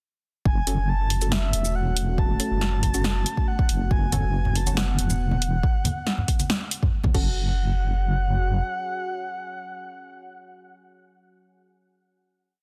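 A brooding, cavernous deep dubstep drop in F# minor opens at 0.5 s with a breathy, flute-like synth lead voicing short call phrases through chorus and dub echo. It sits over a detuned sawtooth wobble bass up front and an overdriven electronic kick in a half-time 139 BPM feel, with a layered house kit adding punchy snare, hi-hats, shaker and crash. Muted, phased chord stabs move one shape in parallel alongside a slow-attack ambient pad with vintage warble, low-tuned congas echo in the background from 4.1 s, and after the drums drop out at 7.2 s and the bass soon follows, the lead, pad and stabs carry the final hit.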